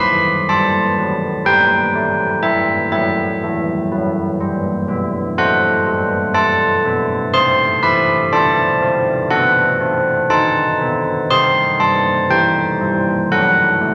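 Solo carillon bells ring out up front, their bronze tone, iron-clapper strike and minor-third overtone heard through a vintage, band-limited sound across a range from E3 to C6. This solemn, wintry classical tune for church bells moves at a slow 61 BPM in 4/4 in E minor, passing from B7 through F#m7b5 and C before settling on F#dim near 13.3 seconds. A wet recital-hall reverb lets each stroke hang in the air across this 13.9-second passage cut from a longer piece.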